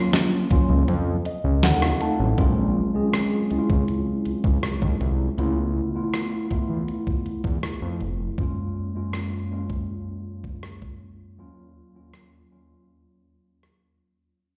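Heard through a big sound system in a bare room, this short contemporary R&B passage carries light digital ambience and a large studio reverb. At 80 BPM in 4/4 with a straight feel in Bb minor, the mood is moody and longing. A mellow tine electric piano, clean and heard through its built-in speakers, plays the chords from the start, moving from a rootless Ebm9 and F7 into a Bbm7, Db7alt, Gbmaj9 progression, and adds a fill while the kick drops out from 0.9 to 2.4 seconds. The crisp 8-bit drum machine sits up front with a thumpy kick, fat snare, rim click and hi-hat, its sampler-style tones tape-warm and re-recorded in a large room. A thick, detuned sawtooth analog bass with a fast attack and decaying notes anchors the low end until 8.3 seconds, and from 2.4 seconds the music is on a long fade-out.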